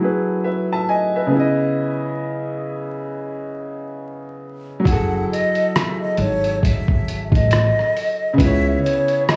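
A swung groove in four gives this short lo-fi hip hop excerpt its reflective, nostalgic mood, set against a soft bed of vinyl crackle and moderate studio reverb. For the first 4.9 seconds a clear, vintage-toned upright piano plays alone, its smooth, long-sustaining chords moving from F#m9 to C#m9 through plate reverb. At 4.9 seconds a muffled, compressed sampler-style drum kit arrives up front with a thumpy kick, hi-hat and rim click, roughened by 12-bit sampler grit and heard as if re-recorded in a large room. At the same moment a woody pizzicato upright bass enters low in the register and drops out at 8.8 seconds. A breathy concert flute carries a short, expressive melody with vibrato and tongued notes, its lifted highs trailing through analog delay and plate reverb as the harmony returns to F#m9 and settles on C#m7.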